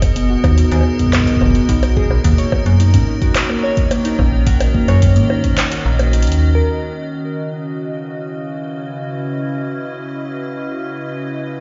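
An up-front metallic FM bass with a fast, decaying attack drives this melancholic, intricate IDM fragment at 108 BPM in C# dorian, joined by a deep electronic kick that drops out at 5.6 s, a booming analog drum machine of bongos, handclaps and tape-warm metallic hi-hats through digital delay, and soft, ringing harp-like synth plucks arpeggiating with chorus and delay over G#m7 and D#m7 chords, until only the icy, crystalline glass pad with chorus and vintage 12-bit sampler grit holds a C#m11 chord to 11.6 s, the mix sitting in a stone room reverb as if played through a big sound system in a bare room, with the highs capped at 7.5 kHz.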